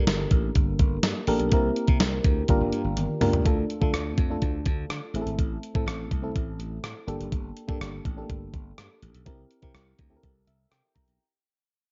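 Nostalgic and dramatic, this 1980s-style pop fragment, cut from a longer piece, moves at 124 BPM in a straight 4/4 and sits in G dorian. An up-front FM electric piano carries the accompaniment with a fast-attack, decaying tone and a noise layer, moving through Gmadd9, C7 and Gm7 before shifting to Dm and Am and circling back. Beneath it, a growly, punchy slap bass plays with a bright, direct amped sound, while a clean 12-bit drum machine, re-recorded in a small room and placed up front, drives the groove with a thumpy kick, medium-tuned snare, hi-hat, rim click, tambourine and toms. A drum fill at 3.0 seconds leads into the second section, where the music begins a fade-out from 3.5 seconds onward. The electric piano adds a closing fill at 10.2 seconds, all within a dark production touched by light reverb.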